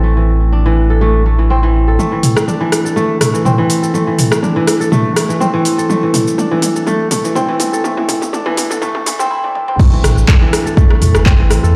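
The sound is that of a big sound system played in a bare stone room, wrapped in a lush hall reverb and filtered at both the low and high ends. This afro house excerpt, cut from a longer piece, carries a warm, hypnotic mood and a light swing. A mellow, crisp kora plays ringing fingerpicked arpeggios up front throughout, coloured by tape echo and sidechain pumping, with a filter sweep over its opening while a round sine sub bass pumps beneath it. At 2.0 seconds the bass stops and an overdriven deep house drum kit enters for a long build-up and drum fill, with metallic hats, handclaps, rim clicks, shaker, toms and crash cymbal in a small room ambience. At 9.8 seconds the drop arrives as the chord moves from Am to Am7, the sub bass returns, and a deep, overdriven electronic kick drum sits at the front of the mix.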